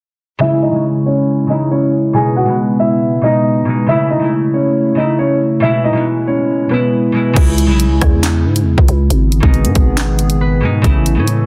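A dark, mellow concert grand piano carries the melody in this ominous drill excerpt, its boxy tone sitting up front under a low-pass filter while a filter sweep runs through the opening section. Around it, a bright, ringing concert harp plays fingerpicked accompaniment, and a warbling, lo-fi pad holds detuned, nostalgic chords in the background, softened by chorus and its own reverb. The harmony moves through C# minor, G# minor, A and E at 138 BPM in a half-time 4/4 feel. At 7.4 seconds the piano drops out and the beat arrives: a growling, buzzy 808-style bass with a fast attack and decaying notes, and an electronic drill kit with a hard-clipped kick, sharp snare, rim clicks, handclaps, crash and bright hi-hats, all pushed forward. A short harp fill appears at 10.2 seconds before the cut, and the digital ambience and dense, heavily limited master keep the whole mix loud and close.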